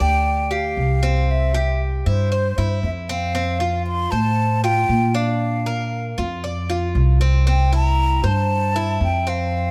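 A light reverb gives this short section of a longer Cuban son and guajira tune a modest sense of space, with the woody, thumpy pizzicato upright bass sitting up front on gut strings. Over a danceable, sunny groove at 116 BPM in 4/4, a close-miked concert flute carries the melody with a breathy, hollow tone, tongued notes and vibrato, while the Cuban tres picks mellow arpeggios whose doubled strings add a metallic shimmer. All three parts play together for the full 9.7 seconds, moving through C, F, Bb and C7.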